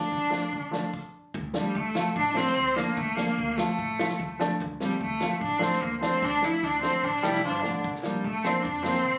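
A bright, focused bowed cello with vibrato leads this soulful, bittersweet klezmer excerpt in D minor at 148 BPM, backed by a woody, slightly detuned upright piano, a dark pizzicato upright bass in the background and a natural drum kit with a punchy kick, pausing briefly at 0.9 seconds before a brilliant, forceful trombone adds a short second line at 7.2 seconds as the harmony moves from Dm to Bb, all heard through moderate reverb on a phone recording in the room.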